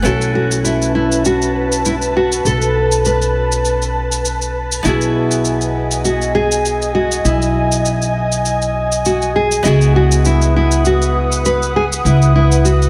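A woody, growly upright bass sits up front in this relaxed, smooth sunset chillout excerpt, moving at 100 BPM in 4/4 with a gentle swing on the 16ths. A dark-toned nylon-string guitar carries the melody from 0.1 seconds, fingerpicked in a classical style and colored by shimmer reverb and tape echo. Alongside it, a second nylon-string guitar with fresh, bright strings plays the accompaniment, using the same shimmer and tape echo. An ethereal, detuned pad with a slow attack holds sustained chords high above, softened by ensemble chorus and shimmer reverb. A gritty, compressed shaker keeps quiet time while the harmony moves from B7sus4 to Emaj7/B at 4.8 seconds and on to C#m11 at 9.6 seconds, all set in a moderate recital-hall reverb.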